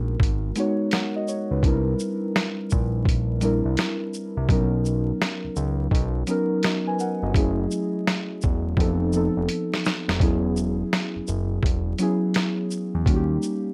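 Nostalgic and reflective, this lo-fi hip hop passage, cut from a longer piece, rides a swung 4/4 groove with a gentle, unhurried sway. Muted, felt-like synth keys carry the accompaniment from the first moment, their soft, dark, intimate tone softened by chorus, cassette tape character and plate reverb as they move through jazzy extended chords such as G#m9, Bmaj9, F7#11 and E69. A fat analog bass sits up front with a thick, detuned, sustained body that stays mellow under the harmony. The boom bap sampler-style drum kit enters at 0.2 seconds, bringing a thumpy kick, a medium-tuned snare, hi-hat and shaker with a gritty, compressed, pitched-down feel, and a drum fill arrives between 9.5 and 10.2 seconds. A moderate studio reverb and a bed of vinyl crackle give the whole recording a dusty, lived-in atmosphere.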